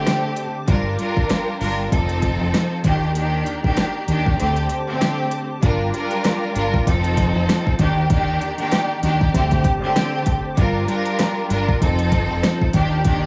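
Rich, bowed studio strings with expressive vibrato sit up front on a cassette-tape tint, carrying a gritty, moody boom-bap hip-hop groove in G minor at 97 BPM with a swung 16th feel, cycling through D7sus4, Gm7, F7 and Ebmaj7. A hollow, flute-like pad with ensemble chorus hangs mellow in the background, while a round, punchy dub bass enters at 0.7 seconds under a layered electronic kit with a deep kick, fat snare and smooth hats. The kick drops out from 4.4 to 5.6 seconds before the second section begins, and vinyl crackle and light studio reverb frame this short cut from a longer piece.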